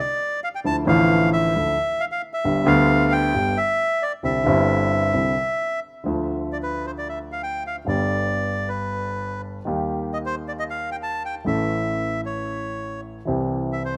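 A rough home demo with light reverb and a small-room ambience captures this passionate, dramatic tango, cut from a longer piece and played rubato in 4/4 at 133 BPM. A reedy bandoneon carries the melody up front from the start, while a warm grand piano with short sustain enters at 0.6 s to accompany it, also close in the mix. From 6.1 s the music moves into D dorian, with the harmony passing through Dm, G, Eb and A before arriving on C.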